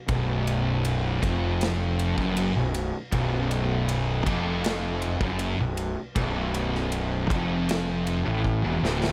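Stoner and doom metal at a slow 79 BPM in B minor, this hypnotic, heavy excerpt opens with two thick fuzz guitars grinding out a low riff, one dark and set back, the other distorted with a rounder tone, over an up-front, punchy fingered bass thick with overdrive and fuzz. A big acoustic rock kit drives it with a punchy kick, medium-tuned snare and bright ride cymbal, while a double-tracked, compressed overdriven guitar joins the riff in the background at 3.1 seconds. A drum fill arrives at 8.4 seconds, and the whole sits in a moderate large-studio reverb.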